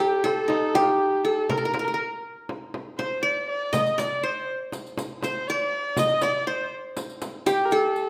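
A plectrum-plucked, bright-edged qanun with triple strings carries the melody up front, joined from the first moment by a single earthy, smooth-topped bowed kamancheh whose light vibrato and portamento shape a soulful second line, while a small frame drum played with soft hands sits close and dry beneath them and a riq's bright jingles enter at 3.7 s, all within a melancholic 9/8 Turkish makam excerpt set in a reverberant recital hall.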